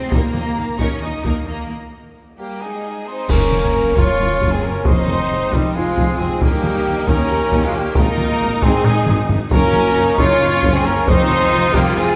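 Heard from further back in a wet scoring-stage reverb, this excerpt of an epic, dramatic orchestral film score drives along at 269 BPM in eighths in a straight 7/8, with heavy-stick taiko drums leading up front while a symphonic violin section carries the melody. A rich chamber violin section adds a focused second line, dark French horns and a close-miked trombone section hold sustained chords, and a viola section fills in the accompaniment over a bass of smooth cellos, lush double basses and a soft-attacked tuba. Dry cymbal swells, clash cymbals and concert bass drum play from the start until 4.2 seconds. An airy silver flute and a vintage-toned trumpet playing stabs enter at 2.4 seconds and stay to the end, as a break and drum fill lead into a band accent and impact at 3.3 seconds, where a barely audible, huge sub drop joins in.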